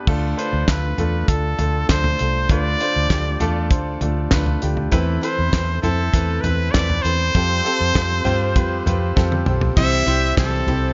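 Earnest and dramatic, this piano-driven pop excerpt moves at a straight 99 BPM in 4/4, with a warm grand piano accompanying a brilliant, up-front trumpet melody full of vibrato and scooped notes, set in delay. A dark, round, foam-muted electric bass and a dry 70s drum kit with a fat snare, tight kick, handclaps and cymbals carry the groove, while a very quiet, bright picked acoustic guitar riff enters at 4.9 seconds. A drum fill at 9.2 seconds leads into a new section at 9.8 seconds, the chords passing from Dm through Amadd9/E and Fadd9 to C, all within a dreamy, reverb-soaked mix with a softened top end.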